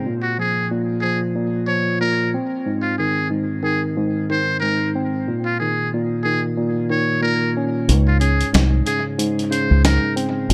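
Boom-bap hip-hop at 92 BPM in Db major with a swung 16th feel, this soulful, nostalgic fragment opens on a worn, slightly out-of-tune tine electric piano with cassette-tape grit and dub echo, joined almost at once by a buzzy, breathy solo trumpet with a metal mute and light vibrato playing jazz-style lines, before a round, dark fingered dub bass and a gritty, compressed sampler-style kit of hi-hat and snare arrive at 7.9 s, all bathed in an echo-heavy digital ambience.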